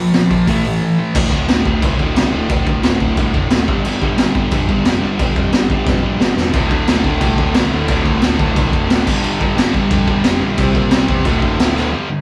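Punk rock with a raw, urgent drive, this excerpt from a longer piece opens with three distorted guitars already churning out riffs: a bright, compressed one, a dark, sludgy overdriven one, and a double-tracked overdriven one that drops out after 1.2 seconds and returns at 6.5 seconds. Beneath them a growly, fuzz-laden picked bass sits in the background, while the garage drum kit stands up front with a high-tuned snare, boomy kick, crash and hi-hat, its sound gritty and saturated with a rolled-off top. The band plays live in a small room with light reverb, a drum fill arrives at 5.9 seconds, and the chords move through A5, D5, G5, C and D.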